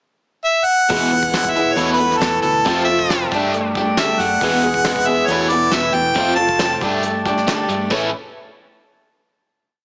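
Heavily compressed into a small-speaker radio sound with light reverb, this short, hopeful and jangly folk rock and heartland rock piece moves at 137 BPM in a straight 4/4. A bright, close-miked harmonica with vibrato and analog delay plays hook-like motifs up front from 0.4 s, and at 0.9 s the band enters: a boxy, warm swing-style acoustic guitar strumming open chord shapes, an overdriven, double-tracked electric guitar riff in palm-muted eighth notes with phaser, a dark, round hollow-body bass playing a dotted figure, and a soft brush kit with a fat snare and tight kick in a small room. The verse cycles through E, Asus2/E, F and Gsus2 before settling on a final A chord at 7.9 s.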